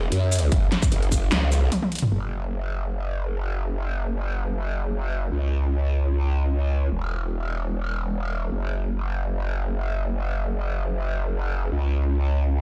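Heavy wobble dubstep in free time, this aggressive excerpt from a longer piece opens on a drop that runs to 2.1 seconds. A growling, saturated wobble bass carries the whole 12.6 seconds, moving between E1 and F#2 with a formant-filtered, chorused edge, a fast attack and a bright, up-front presence. Beneath the opening drop, a layered electronic kit brings a huge snare, metallic low-passed hats, a shaker and toms, while a punchy, tape-tinged kick hits from 0.5 to 1.2 seconds. A short break and drum fill close out the drop before the kit falls away, leaving the sustained, compressed bass alone for the long second section. The dry mix sounds as if played through a big sound system in a bare stone room.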